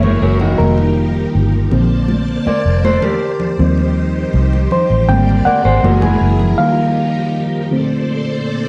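A dark, lightly reverberant production frames this brief, lush and romantic 1970s-style soul excerpt in Bb major at 80 BPM, where a reedy, slightly out-of-tune electric piano with tube-saturated overdrive takes the lead over soft-attack string-machine chords swirling with phaser and ensemble chorus, a slightly broken-up guitar riff in spring reverb, a round, punchy foam-muted bass up front and bright, high-tuned congas in the background, before the guitar, bass and congas drop out around 6.6 seconds for a break that leaves the piano and strings on chords like Gb9, F9sus4 and Bbmaj9.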